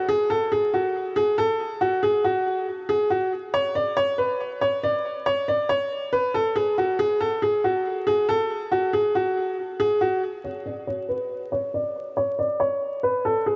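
A half-time hip hop groove in 4/4 carries this tense, dark fragment from a longer piece, where a solo upright piano, woody and boxy with short sustain and set up front, plays through a low-pass filter and delay from 0.0 to 13.6 seconds, shifting to a new section at 10.4 seconds, all wrapped in a huge ambient reverb and a dark, warm production flecked with vinyl crackle.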